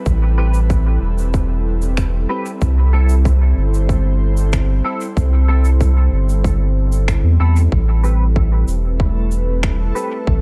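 A straight 4/4 pulse from a tight, overdriven electronic kick and distant, roomy shaker and finger snaps trailing dub echo anchors this spacious, hazy ambient dub fragment, where a round, up-front sub bass with tube saturation sits beneath an airy, breathy chorused pad moving from Am9 to C6, clean, twangy electric guitar stabs pass through ensemble chorus, a low-pass filter and dub echo, and a reversed, granular swelling texture arrives at 8.3 seconds within a dark, small-room production.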